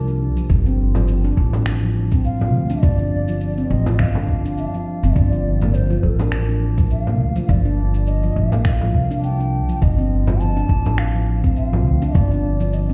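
This organic downtempo excerpt moves at 103 BPM in 4/4, with a 56% swing on the sixteenths and a tuning of A4 = 437 Hz, and the mood is mystical and hypnotic. A hollow, bamboo-toned bass bansuri carries the melody with vibrato and tongued notes, trailed by delay. Beneath it, a woody, thumpy pizzicato upright bass sits up front with a sidechain pump, while a stainless-steel handpan plays ringing, bright arpeggios through a digital delay. Electronic shaker and finger snaps come in at 0.1 seconds, a soft, tape-colored electronic kick drum enters at 0.5 seconds, and a small, close frame drum joins at 0.9 seconds, while a very quiet bronze singing bowl adds metallic, slowly beating tones struck with suede. The harmony rests on Dm over G, moves to a thirdless G7 and returns, and the whole mix sounds heard through a wall, dulled at the top end and set in a stone room.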